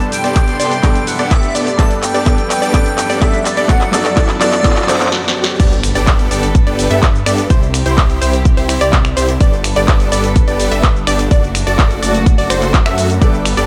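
A punchy, up-front electronic kick drives this triumphant, uplifting festival progressive house excerpt in G major at 126 BPM. A layered house kit adds a punchy snare, bright hats, claps, snaps, shaker and cymbals, while an airy, dreamy lead with chorus and vibrato floats over a clear baby grand piano, a mellow pumping pluck arpeggio, huge detuned supersaw chords and soft bowed strings in the background. After a build-up with a filter sweep on the pluck, a very quiet riser and a short break at 5.1 seconds, the drop lands at 5.6 seconds with an impact and a thick, saturated detuned saw bass, all under light reverb.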